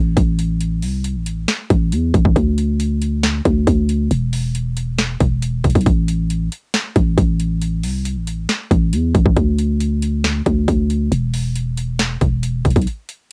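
A growling, buzzy 808-style bass sits up front from the start, its sine tone hitting with a fast attack and then decaying in the low register of this menacing, brooding trap cut from a longer hip hop piece. An electronic trap drum kit joins at 0.2 seconds with a hard-clipped kick, a sharp snare and metallic hi-hats, all pushed forward and roughened by overdrive and cassette tape saturation over a half-time feel. The dry sound carries the grit of a home cassette recording with little reverb.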